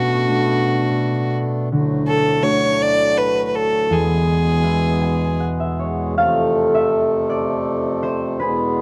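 In an uneven, rubato 3/4 at around 81 BPM, this tender, pastoral Celtic slow air, cut from a longer piece, opens with a clear, smooth bowed fiddle with light vibrato singing the melody up front until 5.4 seconds, over ringing thumb-plucked concert harp and the reedy, breathing sustained chords of a hand-pumped harmonium, while the harp adds a fill from 4.6 seconds and takes a solo from 6.2 seconds, all captured in a dry, close 1970s-style studio sound.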